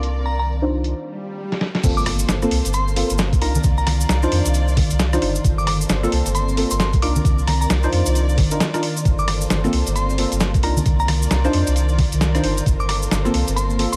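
Skippy and moody, this two-step UK garage cut moves at 133 BPM in G minor with a swung 16th-note feel, alternating Cm11 and Gm11 chords over a round, tube-saturated dub sub bass and a gritty, pitched-down sampler-style kit of snare, hi-hat, rim click, congas and crash, its hats, snare, cymbals and percussion all low-pass filtered. A brief opening section carries a filter sweep on the deep, detuned chord stab, then a short break with an electronic swell and a drum fill before the drop at 1.8 seconds, where a thumpy, compressed kick and a grainy, bright cabasa join and a background impact rings out until 3.6 seconds. Above, a glassy FM bell melody warbles through chorus, tremolo and dub echo, while a woody, bowed violin section holds sustained chords with sidechain pumping and an ethereal, airy pad drifts in the background with ensemble chorus and its own reverb, all in a dry mix.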